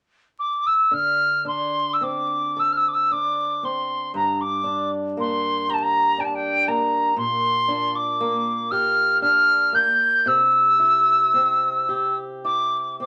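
Rubato and uneven in a three-beat metre, this mournful, longing Celtic slow air, cut from a longer piece, opens with a pure, mellow tin whistle at 0.4 s, carrying the melody up front with vibrato and a soft attack. A boxy, fingerpicked acoustic guitar joins beneath it at 0.9 s with a swing-style accompaniment, moving through D5, Gm, Bb6 and C. Moderate studio reverb and vinyl crackle lend the recording an aged, intimate sound.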